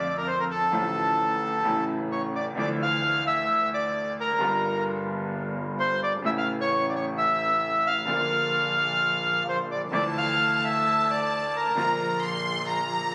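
Sultry and tense, this tango excerpt in D minor moves at 131 BPM in 4/4 with a rubato feel, cut from a longer piece. A reedy, vintage-toned bandoneon carries the melody up front from the start, ranging from A4 to F5 until it stops at 12.2 seconds. Beneath it, a brilliant concert grand piano supplies the accompaniment with deep bass, while a single bowed double bass sits distant and focused, its tone marked by vibrato. At 9.9 seconds a bowed violin section enters close and up front with a biting, earthy second line high in its range, played with light vibrato. The harmony turns through chords such as Dmadd9, Gm7, A and Bb, and the whole is heard through a moderate large studio reverb, captured on a phone in the room.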